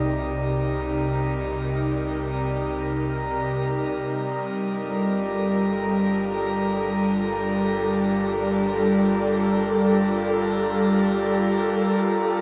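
Soaked in a long shimmering reverb over a small-room ambience, this reflective, melancholic ambient fragment in free time and G minor sets an up-front, breathy chorused pad holding sustained chords beside a reedy, nasal hand-pumped harmonium drone and a deep, round sub bass, all three sounding throughout as the harmony moves from Cm7 to Gm7 at 4.1 seconds.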